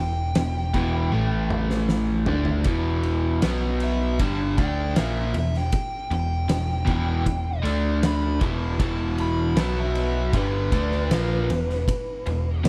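A bright, double-tracked overdriven guitar riff opens this smoky, brooding blues rock and southern rock clip alongside a dark, round picked bass and a small cranked amp's lead guitar soloing in a higher, warm, quieter line that runs throughout. An oversized, low-tuned kit enters at 0.4 seconds with a punchy kick, fat snare and ride, playing a fill from 1.1 to 2.7 seconds, its gritty, saturated sound pumping in a stone room. The riff carries a touch of spring reverb up front in an otherwise dry mix as the chords move between Em, A5, E5, B5 and D5.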